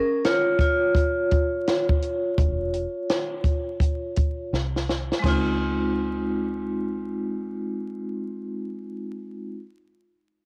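A bright, ringing vibraphone struck with hard mallets, with slow motor vibrato, opens this relaxed jazz-hop hip hop excerpt in Db major at 84 BPM with a swung 16th feel, joined almost at once by a dry, up-front cocktail drum kit with dark cymbals, a high-tuned snare and a tight kick, roughened by 12-bit sampler grit and cassette tape, before a round, foam-muted, tube-saturated fingered dub bass arrives at 2.4 seconds, a drum fill leads into a Dbmaj7 at 5.2 seconds, and the whole take sits in a springy reverb with a home-cassette recording character and vinyl crackle.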